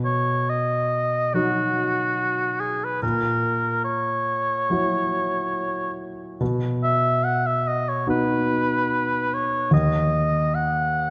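A clear oboe with light vibrato and a smooth top sings a tender melody up front over an intimate grand piano, whose audible action noise adds natural detail, in this short romantic classical excerpt for the duo in B major at a rubato 72 BPM in 4/4, tuned to A4 = 437 Hz and set in a recital hall with a reverb of 1.8 seconds.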